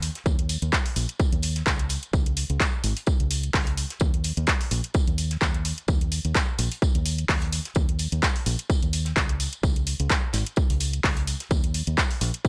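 Bittersweet and energetic, this piano house excerpt at 128 BPM with a 55% sixteenth swing pairs an up-front, foam-muted fingered electric bass pumping across a range of Ab1 to Eb2 with an overdriven, punchy electronic kick that enters at 0.3 seconds, an overdriven house kit of handclaps and hi-hat re-recorded in a large room, and a loose acoustic indie kit of hi-hat, medium-tuned snare and tambourine sitting rolled-off and pumping in the background, all fairly dry with a dark top end.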